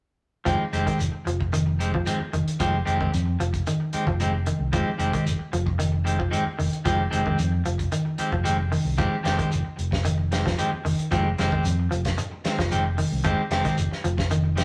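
A rough rehearsal-room recording soaked in wet stone-room reverb carries this hypnotic, intense afrobeat fragment, where a slightly broken-up, twangy electric guitar picks arpeggios and a clean, up-front electric guitar fires stabs over a single Fm9 chord, anchored by a dark, round fingered electric bass, a soul drum kit with a fat snare and tight kick, and a grainy, very quiet shekere.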